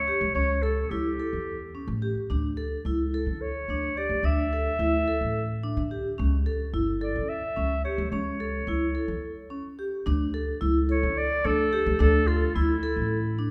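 A clear, vintage-toned solo clarinet carries the classical-style melody from the first moment, joined by a woody, growly pizzicato upright bass and, a split second later, a metallic, ringing vibraphone with medium mallets and medium motor vibrato spinning arpeggios. This hypnotic, restless piece of contemporary chamber music moves in 7/8 at 216 BPM counted in eighths, its harmony alternating between A and Dsus2, with a brief break at 9.2 seconds before the opening material returns at 10.1 seconds. All three parts sit up front within the lingering reverb of a recital hall, and the passage is cut from a longer piece.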